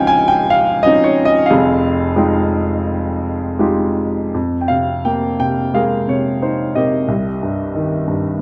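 Classical solo piano in a lyrical vein, this short passage cut from a longer piece carries a cool, bittersweet mood and moves with a supple rubato feel in four. A single upright piano plays alone for the full 8.4 seconds, its woody, polished tone sitting up front and present, with long sustain letting each harmony hang in the air. The part spans from deep bass notes up into the upper middle of the keyboard, giving the writing a full, rounded body. Lush extended chords carry the harmony, opening on Dbmaj9 and settling onto Fm9, then shifting at 4.3 seconds to Fm11 before turning to Cm7 near the close. A moderate recital-hall reverb and a dark, warm production wrap the instrument in an intimate glow.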